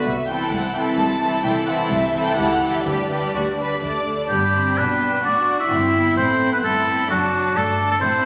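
A quick classical-period movement for symphony orchestra in G major, this 3/4 passage at 129 BPM feels restless and urgent, and it is cut from a longer piece. The strings open together, with a dark, woody violin section carrying the melody in a lush, vibrato-rich sul tasto tone while a second violin section adds a pure, floating line beneath it. Violas fill out the accompaniment with a rich, close sound, and a dark, intimate double bass section joins a background cello section on the bass, all bowed softly over the fingerboard. At 4.3 seconds a clear, vintage-toned solo oboe steps up front with a second line sung with vibrato, as a mellow French horn section lays down sustained chords. The harmony moves from Am/C through A7/C#, G/D and D5 to G, then on to Am7/G and D7/F#, and the ensemble sits in a wet recital hall reverb that rounds out the sound.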